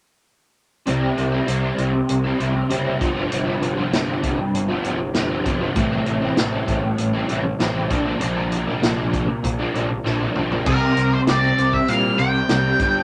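Kaleidoscopic and hazy, this short cut of psychedelic rock moves at 98 BPM in a straight 4/4, as a double-tracked, overdriven semi-hollow guitar played through a rotary speaker carries the riff over a round fuzz bass and a vintage acoustic kit with a punchy kick and rolled-off top, all in a small room. A very quiet, tense string-like drone with slow attack and vibrato hovers beneath from 2.8 to 10.7 seconds while the chords pass from C through G7, Am and Bb. After a drum fill, a dark octave-fuzz lead guitar with wah steps up front at 10.7 seconds over a C5 chord.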